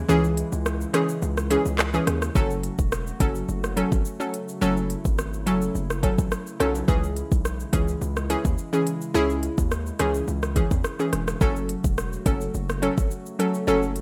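A hollow, flute-like pad in the background and a punchy, saturated 808-style bass open this sultry, bouncy dancehall clip, joined at once by a bright, wave-folded analog pluck with chorus and sidechain pumping, an electronic afro-pop kit of handclaps, smooth hi-hat, rim click and shaker whose deep kick holds off until 2.4 seconds, and very quiet acoustic maracas and timbales, all over a C#m to F#m progression in a rough home demo mix with light reverb.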